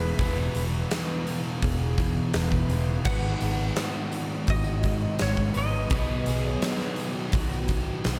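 A clean, bright electric guitar plays a twangy, compressed melody over shimmering twelve-string acoustic arpeggios from the very start, both washed in chorus and delay, while three overdriven and fuzzy guitars grind out riffs beneath them and a round, foam-muted bass holds the low end. This is a dreamy, blissful slice of shoegaze and dream-pop rock at 84 BPM in 4/4, moving through E, G#m7 and B in E major. At 0.2 seconds a huge arena drum kit lands up front with a punchy kick, medium-tuned snare and bright cymbals in a pumping room sound, joined by a very quiet, jingly tambourine. The raw garage guitar carries a reverse reverb, the thick fuzz guitar adds chorus in the background, and the sludgy guitar is double-tracked. The clean melody drops out at 7.0 seconds, and the whole mix is soaked in a lush hall reverb for a hazy, enveloping sound.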